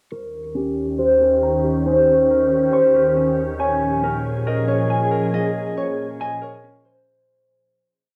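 A thumb-plucked concert harp leads this short, melancholic and ethereal cloud-rap hip hop piece in half-time feel, its ringing, up-front looping melody softened by tape echo, while a glassy FM pad holds slow-attack chords through ensemble chorus and a dark, clean electric guitar repeats compressed arpeggios in threes, all set in a filter-swept breakdown over Eb7 and Bbm7 with a cassette home-recording haze and a fade-out from 5.3 to 7.1 seconds.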